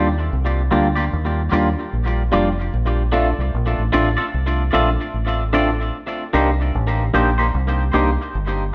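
A swung 75 BPM reggae groove in Bb major carries this smooth, romantic live-room excerpt, where a dark, round fingered dub bass sits up front beneath clean, compressed, twangy guitar stabs colored by phaser and tape echo, and a bright, barky tine electric piano, lightly overdriven through a combo amp with tape echo of its own, moves through Ebmaj9, Bbmaj7 and Cm7 in a large studio's moderate reverb.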